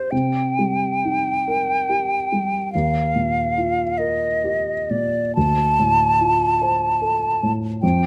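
Closely miked and detailed with a light reverb, this brief excerpt from a longer impressionist classical piece pairs flute and baby grand piano in a hazy, mysterious mood. In a slow, rubato 6/8 at 40-50 BPM counted in dotted quarters, the hollow, airy concert flute carries the melody from C5 to A5 with vibrato and a crisp attack, sitting up front and a little above the piano. The dark, mellow baby grand accompanies from D2 to C5 in C dorian, its short sustain and audible action noise lending an intimate feel as the harmony moves from Cm7 through Ebadd9 to Dm7.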